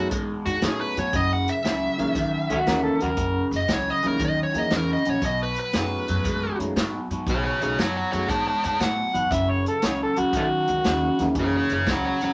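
Rollicking and soulful, this electric blues shuffle at 117 BPM moves over B13 and F#13 chords as an overdriven, up-front lead guitar carries the melody, a slightly broken-up riff guitar with phaser and a thumpy, gut-strung upright bass hold down the low end, a mellow concert grand piano accompanies, a distant, roomy big-band drum kit with a boomy kick keeps the swing, and a gritty amplified harmonica with scooped notes and tongue slaps cuts in at 2.5 s and again at 9.2 s, all under light reverb.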